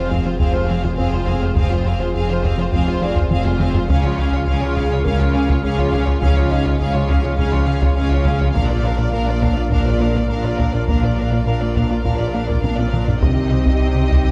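Relentless and tense, this hybrid orchestral and electronic film cue, cut from a longer piece, moves in a straight 4/4 over a progression of Fm, Db, Bb and finally Cm. Two bowed violin sections carry the lush, vibrato-rich melody and a smooth-topped second line in the background, while a clear, distant viola section adds accompaniment and rich cellos join a focused double bass section underneath. Electronic layers thicken the sound: a sustained analog pad with chorus and a sub octave, a soft round pluck playing very quiet arpeggios, a rubbery, hollow square-wave bass riff, and a deep, full sub bass with an added octave. A very quiet, felt-muted upright piano lends an intimate, vintage texture until 13.2 seconds, and a compressed, saturated taiko ensemble struck with hard sticks drives the rhythm, with drum fills at 3.3 and 12.6 seconds. At 13.2 seconds a mellow French horn section enters with very quiet sustained chords as the harmony shifts to Cm, all set in a moderate scoring stage reverb.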